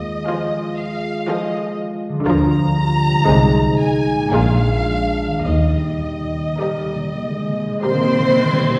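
A rubato triple metre lets this short, lyrical classical passage breathe with a serene, unhurried sway. A lush violin section carries the expressive, vibrato-laden melody from a slight distance, while a second violin section joins at 0.3 s with a smooth, even line beneath it, alongside violas whose focused, rich sound fills in the accompaniment. Dark, roomy French horns hold sustained chords, and a thumb-plucked concert harp rings out arpeggios in the background. Clear cellos and a rich, distant double bass section anchor the bass, with the double basses dropping out at 6.4 s, and soft-mallet timpani enter at 5.4 s with a round, close and dry fill as the harmony settles home. The whole ensemble sits further back in a wet scoring-stage reverb that gives the strings and horns a spacious, enveloping glow.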